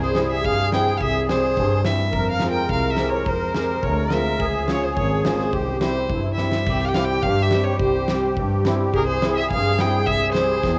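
This bittersweet, soulful klezmer excerpt opens with violin, accordion, hammered dulcimer, double bass and drums together at 106 BPM in a straight 2/4, set in C phrygian dominant over a C, F minor and D-flat progression. Up front, a single rich, smooth and even bowed violin carries the melody with vibrato, while a reedy, dark musette accordion shimmers beneath it as a second line. A ringing acoustic hammered dulcimer fills in the accompaniment, and a single bowed double bass, soft in attack and warm, sits up front with expressive portamento and vibrato. A big-room drum kit with a fat snare, punchy kick and crash cymbal marks the phrase, with a fill at 6.4 seconds leading into a repeat of the opening passage at 6.7 seconds and another fill at 10.6 seconds. The home cassette recording has light reverb and a dulled top end, with tape colouring every part except the bass.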